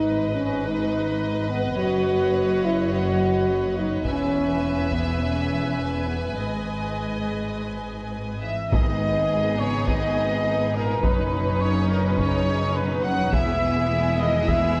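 Cinematic, epic orchestral film score in G# minor at 104 BPM, dark and relentless, cut from a longer piece, where lush bowed violins carry the melody over a second violin line, distant viola accompaniment, mellow French horn chords and a rich bass of cellos and double basses. Close, dry taiko hits with hard sticks enter at 4.0 seconds. At 8.4 seconds, trombone chords in the background and soft-attack trumpet stabs join, with a round, very quiet timpani briefly at 8.7 seconds, all inside a moderate concert hall reverb.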